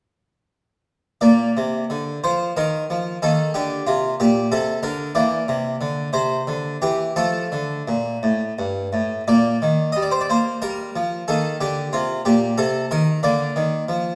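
A solo harpsichord enters at 1.2 seconds, its plucked, full tone from two sets of strings sitting up front in an Italian-style voice. This is a classical, baroque-style suite movement in 6/8, played with a flowing rubato that gives it a serene, unhurried character. The instrument ranges from G2 up to Eb5, and the harmony moves through Bb, Eb5, C7 and F before returning along a similar path to settle on Bb/D. A wet recital hall reverb surrounds the harpsichord, letting each note ring into the space. The passage is cut from a longer piece, and the playing stops at 14.2 seconds.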